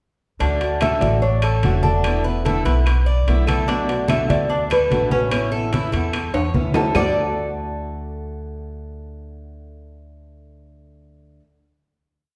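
Relaxed and warm, this short Cuban son and guajira piece in D major moves at 147 BPM in a straight 4/4, with a thumb-plucked nylon-string guitar carrying a classical, motif-based melody of call phrases, finger squeak audible, over a metallic, double-strung Cuban tres picking an arpeggiated guajeo and a boxy, fingerpicked swing-style acoustic guitar strumming with muted slaps. An up-front, dark and thumpy gut-string upright bass plays a pizzicato tumbao that anticipates the chords, while thick-skinned, low-tuned congas sit in the background, ringing metal-shell timbales sound compressed and saturated, and very quiet woody claves keep a two-bar time line. The percussion drops out after a drum fill from 6.3 to 7.0 seconds, and the strings then hold a final D chord in a wet recital hall reverb.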